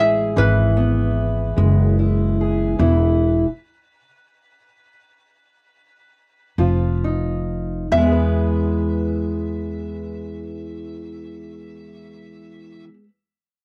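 Acoustic country blues in a slow 12/8 at 44-50 BPM in E major, soulful and rollicking, cut from a longer piece: a metallic, nasal lap resonator guitar carries the slide melody with fingerpicks, over a dark, boxy parlour steel-string guitar fingerpicking the accompaniment with a cassette-tape tinge, while an up-front, woody, growly pizzicato upright bass holds the low end. The tempo slows from 1.2 seconds, the music stops at 2.8 seconds, and at 6.6 seconds it returns on a D#sus2/E# chord before settling back to E for the closing passage. It is a dry, intimate home recording on cassette.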